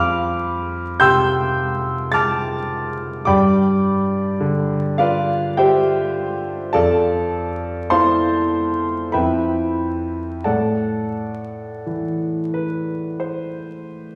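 A clear, smooth grand piano with a vintage character and long sustain sits up front in this nocturnal, mysterious impressionist classical solo, drifting in a rubato 3/4 at 43-54 BPM across a range from F2 to A6 through chords such as F69, G7sus4, Fmaj7#11 and Am6, tuned to A4 = 438 Hz and heard from further back in a recital hall with a 1.6-second reverb, vinyl crackle and studio ambience, in a 14.2-second excerpt cut from a longer piece.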